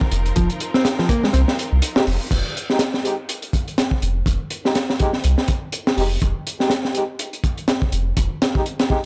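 A lush, bowed string section pumps softly in the background over F7(no3) while a crunchy, punchy breakbeat kit with dark cymbals and a high-tuned snare drives this funky, swaggering 123 BPM breaks cut in F minor, joined by a deep, tube-saturated sub bass and a brief bright picked electric bass riff with analog delay. The kick drops out from 1.3 s to 2.3 s, a warm brass ensemble with light vibrato enters at 2.0 s with gritty 12-bit stabs and delay, and at 2.3 s the strings stop as the harmony shifts to Fm9. The whole has a dry, gritty hardware sound in a small room, with the drums and sub bass up front.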